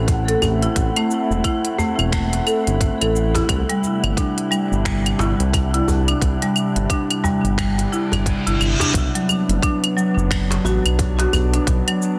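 Organic downtempo with a meditative, mystical air, moving at an unhurried pace with a gentle swing on the sixteenths. A warbling, lo-fi pad holds sustained chords through the whole clip, its detuned sawtooth and triangle tones softened by chorus and reverb and nudged by sidechain pumping, while a woody marimba on rosewood bars plays arpeggios through a low-pass filter and tape echo, with a filter sweep running across the first 8.9 seconds. Up front, a smooth, nasal synth bass sits low with a fast attack and vibrato, thickened by tube saturation, and an airy, breathy wind-like noise texture lingers in the background on a single high note until 9.0 seconds. The rhythm comes from an electronic afro-pop kit of claves, finger snaps, crisp hi-hat and shaker, with soft clipping on the snare, a tight, tape-toned electronic kick re-recorded in a large room, and a band-limited, vintage djembe with metal rattles tucked far behind. 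A reverse cymbal leads into the change at 8.9 seconds, where the harmony moves from A minor and C add nine to B minor, all held in light digital ambience and a dense, heavily limited modern master.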